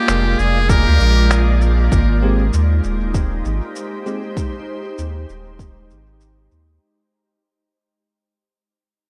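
A relaxed 4/4 groove with a lilting sixteenth-note swing sets the pace for this spacious, peaceful ambient dub fragment, taken from a longer piece. Muffled, pitched-down finger snaps and cabasa carry a compressed, sampler-style texture with reverb and dub echo, while a layered, tape-warm electronic kick lands deep underneath, and a round, soft sub bass sits up front with a sustained, fast-attack tone. A muted trumpet opens the melody, buzzy and thin with light vibrato in a classical solo manner, its gritty vintage-sampler colour trailing into dub echo before it stops at 1.6 seconds. Throughout, an organ-like pad holds calm, pure, detuned unison chords with slow attack, long release, ensemble chorus and its own built-in reverb, moving from Bb7 to Abmaj7. A very quiet, bell-like tine electric piano adds clean, direct stabs between 2.2 and 4.2 seconds, as the whole mix, set in light digital ambience, fades out from 1.9 seconds onward.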